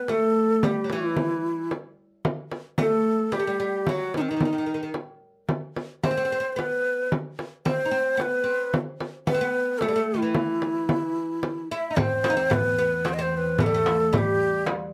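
Light reverb gives a gentle sense of space to this melancholic, hypnotic excerpt of Arabic maqam music in 3/4. A breathy reed-cane ney sits up front carrying the melody, its close-miked tone expressive and tongued with vibrato. Beneath it, a fretless oud plays a second line with a woody, deep voice from its double strings, while a small frame drum, dry and bright, is played with soft hands close to the listener. At 12.0 seconds the texture thickens as a single bowed cello enters with a rich, reedy gut-string drone on a low E. At the same moment a metal-shell darbuka joins with crisp, hard-handed strokes and a vintage, band-limited colour.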